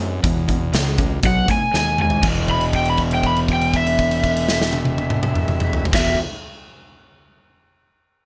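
Light reverb surrounds this raunchy, swaggering clip of blues rock and southern rock, cut from a longer piece in E major at 120 BPM in a straight 4/4, moving from E5 to B7 and back to E5. A crunchy, double-tracked picked guitar riff and a growly, fuzz-drenched fingered bass open the track, while an up-front acoustic drum kit in a big room adds a punchy kick, a medium-tuned snare, toms and bright crash and hi-hat. A bright, overdriven slide guitar played with fingerpicks enters at 1.3 seconds, and after a drum fill a single note is held from 2.2 to 5.9 seconds.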